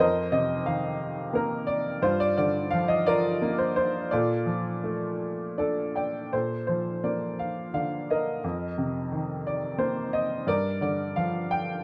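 Hopeful and sunny, this short classical passage for solo piano, cut from a longer piece, has a clear, woody, slightly detuned upright piano sitting up front in a lyrical, rubato triple metre, moving through F7sus4, Gm7 and Bbmaj7 chords with a brief fill at 5.2 seconds before the opening phrase returns, all framed by light reverb and a dark, warm production.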